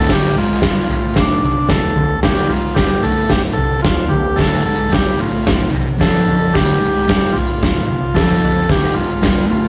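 A buzzy, overdriven combo organ carries the melody over a double-tracked fuzz guitar riff from the start of this menacing, swaggering garage rock excerpt in D minor, moving at a straight 112 BPM and resting on a single Dm chord. An oversized, low-tuned acoustic drum kit sits up front with a boomy kick, fat snare, toms and dark crash cymbal, its gritty sound pumping in a big room. The rough rehearsal-room recording has tube saturation and a moderate stone room reverb, and a jingly, band-limited tambourine slips in at the back at 8.8 seconds.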